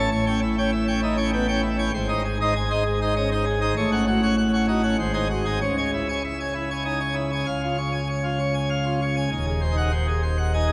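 Classical organ toccata in triple time, dramatic and majestic, played by a solo pipe organ on a full plenum of brilliant mixtures with baroque voicing and crisp chiff, heard up front within a long, resonant church reverb, with a new section arriving at 7.5 seconds before this excerpt breaks off at 10.7 seconds.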